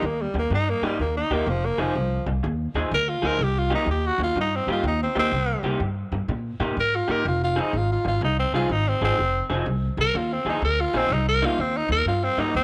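A growling, raspy tenor saxophone solos up front with slapback echo and scooped notes over a soulful, brooding electric blues shuffle, while a slightly broken-up, lo-fi electric guitar riff bathed in lush chorus and a woody, pizzicato upright bass move between Cm7 and Fm7 in light studio reverb throughout this 12.6-second cut from a longer piece.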